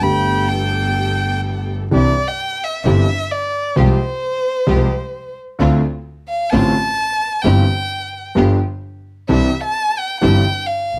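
A reedy, bright bandoneon opens this playful, nostalgic tango fragment up front, sounding alongside bowed violin, concert grand piano, a symphonic string section and double bass before it falls away at 1.4 seconds. The rubato feel lets each phrase breathe, while the piano's intimate, vintage tone, with its deep bass and audible action noise, carries the accompaniment. From 1.9 seconds the violin takes a solo that is close and expressive, with vibrato, a soft attack and portamento colouring its singing line. Beneath it the string section adds lush ensemble stabs, and the focused, clear double bass, bowed by a single player, anchors the low end. Added-ninth chords and passing minor chords give the passage a wistful glow, and light reverb surrounds the parts until the recording stops at 11.0 seconds.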